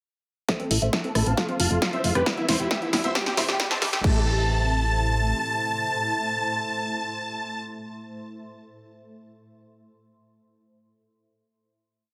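A punchy, overdriven four-on-the-floor kick and a tape-warm analog drum machine with hats, rim clicks, backbeat snare and crash open this euphoric, driving uplifting trance piece in A minor at 135 BPM, as a huge detuned supersaw riff in thirds and sixths, doubled very quietly by a plucky square-wave lead, soars over a squelchy acid-bass arpeggio, a round galloping FM bass and a shimmering granular pad entering at 1.7 s, through a filter-swept build with a faint riser from 2.0 to 4.0 s, before the drums drop out at 4.1 s and everything that remains rings out on a final A minor chord in a lush hall.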